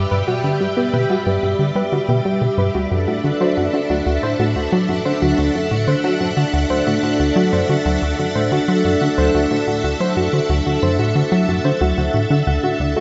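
Bathed in a lush hall reverb with a long 3.1-second tail and a soft, darkened top end, this cosmic, luminous fragment of ambient, sequencer-driven space music moves at 91 BPM in a straight 4/4. Up front, a vintage string machine plays full, sustained ensemble chords with a slow attack, a sub octave and ensemble chorus, shifting from G to Dadd9 at 2.7 s. Equally prominent, a punchy, funky analog bass riff built from sawtooth and pulse waves snaps in with a fast attack and decays through a filter pluck and a moving notch, echoed by analog delay. Above it, a gentle, round pluck spins arpeggios, its triangle, sine and saw tones blended with a noise layer, a filter sweep, chorus and delay. Deep in the background, an airy, breathy tuned noise texture hangs on a single E5 like distant wind, carrying its own reverb through all 13 seconds.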